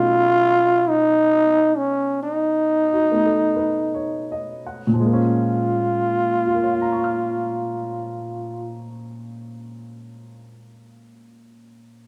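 A growling, raspy trombone carries the melody in this intimate, smoky jazz ballad excerpt. Its close-miked tone is gritty and bright, with vibrato and scooped notes. A dark baby grand piano supplies mellow, natural-sounding accompaniment, also up front but quieter than the horn. The band plays live together in one room with a swung feel in four, wrapped in a wet studio reverb. The opening passage slows down over a B7 chord, and at 5.0 seconds a new section arrives on Bbm7. The trombone stops at 8.9 seconds, leaving the piano alone until 12.1 seconds.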